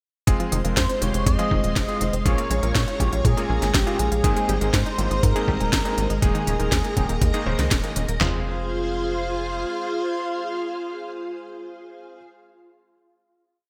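A bittersweet, danceable italo disco piece in F minor at 121 BPM opens with a lush string machine pad, clear electric grand piano stabs in dotted-rhythm chords, a tight, punchy sequencer bass with tube saturation driving sixteenth notes, a gritty sampler-style kit with thumpy four-on-the-floor kick, toms and handclaps layered with a house kit's crisp hats and cracking gated-reverb snare, and a round, detuned analog pluck arpeggio set in the background with tape echo, before a thick, nasal unison lead enters at 0.8 seconds with a vibrato-laden motif over Fm, Bbm7, Abadd9 and Ebsus4. The drums drop out around 8.3 seconds and the bass follows at 9.7 seconds, as strings, piano and lead hold a final Fm chord to 12.2 seconds.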